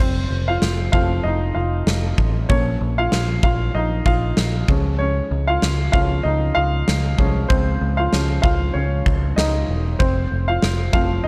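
A baby grand piano, bass and drums all begin together at the start of this brief, bittersweet piano-driven pop cut, which moves with a driving pulse and a light swing on the sixteenths. The warm, present piano takes the lead throughout, playing a solo over chords that move from F to B-flat minor and D-flat before returning to F near 10.0 seconds, with a touch of plate reverb around it. Beneath it, a picked electric bass sits up front with a dark, round tone heard direct and through an amp. The huge arena kit of kick and snare pairs a punchy kick with a medium-tuned snare in a hall-like, pumping room, and it stops just before the other parts at 11.1 seconds. The overall production is dark and warm, with light reverb and all three parts placed close to the listener.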